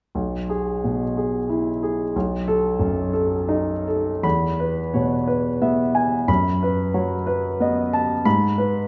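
A grand piano sits up front in a recital hall, its tone warm, smooth and vintage, with a wet reverb whose 1.6-second tail blooms around each chord. This is a romantic classical character piece for solo piano in E major and 3/4, tuned to A4 = 435 Hz and moving between 75 and 94 BPM with an elastic rubato feel. The mood is passionate yet hopeful, with the piano spanning B1 to B5 across its brief 8.9 seconds. The opening passage rests on E over B before turning to B7 at 2.1 seconds, and a second passage begins at 4.2 seconds on a plain E chord, moves through B7 over F#, and closes on a rootless E over G#. Cut from a longer piece, the fragment feels like a glimpse of a larger romantic statement.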